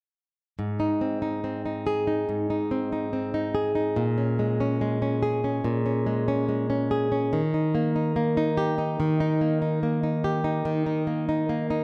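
Heartbroken and melancholic, this short excerpt, cut from a longer piece, sits in a pop setting at a slow 71 BPM in a straight 4/4. A lone flamenco guitar carries everything, fingerpicked and acoustic, with a warm tone placed up front. It plays from 0.6 to 11.8 seconds, ranging from Ab2 to Ab4 as the harmony moves from Ab to Bbm7 at 4.0 seconds and then to Eb at 7.3 seconds. A moderate scoring-stage reverb lends the guitar a sense of space, its tail lingering around the notes. The tuning sits slightly above standard pitch, with A4 at 441 Hz.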